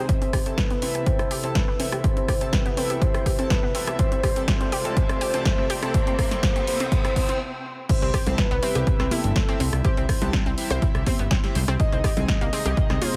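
A straight 4/4 progressive house groove, uplifting and expansive, rides on a punchy, up-front electronic kick and a tape-toned house kit of snare, hi-hat, rim click and crash beneath a breathy, very quiet pad, glossy sidechain-pumped polysynth stabs, a round octave-layered lead melody with vibrato and a detuned analog pluck arpeggio, all four filter-swept through a build-up that a background riser lifts from 3.4 to 7.4 seconds before a brief stop gives way at 7.9 seconds to the drop, where a fat sawtooth bass and ringing congas and bongos join under light reverb in this passage cut from a longer piece.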